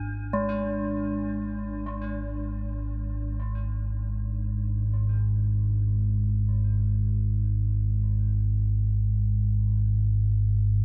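Drenched in a huge, wet reverb, this recording places its sounds in a vast, echoing space where every note hangs for seconds before fading. It is a short excerpt of dark ambient drone, desolate and unsettling in mood, with a free, unmetered flow. A deep, ominous drone rumbles up front for the full 10.8 seconds, its blend of triangle and sawtooth tones rising with a slow attack, sustaining, and dying away on a long release, further thickened by its own built-in reverb and a lush chorus. Over it, a gamelan-type bronze metallophone struck with a horn mallet rings out bright, metallic arpeggios, also up front and trailed by tape echo, before it stops at 6.5 seconds. The drone then carries on alone, its dark low end filling the cavernous room.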